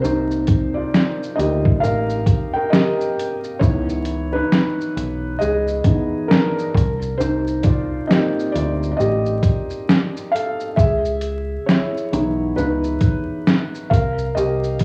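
Lo-fi hip hop at 67 BPM with a swung, melancholic and reflective feel, this cut from a longer piece features a soft, felt-muted upright piano whose intimate, mellow solo, with audible action noise and a cassette-tape, low-pass coloring, drifts between Cm9 and C#m9 before settling on Cm7 at 13.9 seconds, over a dark, round picked electric bass and a compressed, pitched-down sampler-style drum kit with a thumpy kick, medium-tuned snare, hi-hat and shaker, all set in a small room with light reverb and vinyl crackle.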